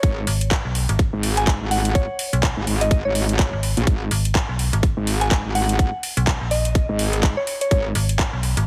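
Bass house with an aggressive, gritty mood, cut from a longer piece, built on a tight, up-front electronic kick and a garage kit of handclaps and metallic hi-hats, both in studio reverb under a swung sixteenth-note feel. A distorted, wobbling metallic bass with chorus and tube saturation pumps against the kick, joined at 0.3 seconds by a second, more digital FM bass with overdrive that also pumps, while a soft, pure synth bell carries the melody through chorus and digital delay. The mix is dry and heavily compressed, with a radio-like sound.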